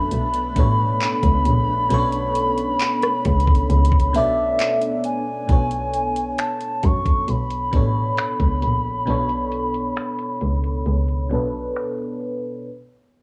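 Contemporary R&B at a slow 67 BPM in B dorian, this longing, moody excerpt opens on a Bm9 chord, with a hollow, woody clarinet-like synth lead carrying the melody through chorus and tape echo over glassy, bell-like FM electric piano and a very quiet, cloudy granular pad that ends at 5.4 seconds. A rich, bowed double bass with vibrato sits up front beside a trap drum kit of knocking kick, metallic hi-hats, finger snaps, handclaps and rim clicks, the kit and piano both colored by cassette tape. The dry, low-passed home-cassette sound takes on a filter sweep from 5.5 seconds, and a break arrives at 9.1 seconds.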